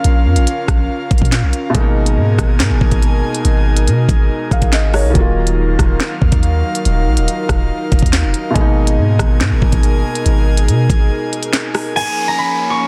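Dark, ominous drill hip hop at 141 BPM in a half-time feel, built on a felt-muted upright piano with a mellow, low-passed softness and an airy, breathy chorused pad moving through Bbm and minor add9 chords, while a deep, sine-like 808 bass drops out for a break at 11.1 s and an up-front drum kit with knocking kick, sharp snare, crisp hats, handclaps and rim clicks carries gritty 12-bit sampler texture until 11.8 s, after which a ringing, fingerpicked concert harp and an electronic downlifter appear at 12.0 s in a dry, dense, heavily limited mix cut from a longer piece.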